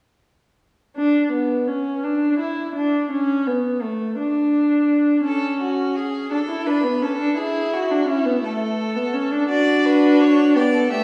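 A classical, baroque-style fugue for string quartet in D major, this joyful, stately passage moves at 56 beats per minute in a straight 6/8, and it is cut from a longer piece. A single bowed viola opens alone at 1.0 seconds, its warm, smooth tone sitting up front with an even vibrato as it carries the accompaniment through the low-middle register. At 5.2 seconds a violin enters as a second line, softer and more distant, its tone similarly mellow and vibrato-laden, while the harmony moves through A over C sharp, an open D fifth, A, and then D. A second violin takes the melody at 9.5 seconds, higher and full-bodied, also heard from further back. The whole sits in a lush scoring-stage reverb with a 1.7-second tail and a small-room ambience, giving a spacious yet intimate sense of a small ensemble.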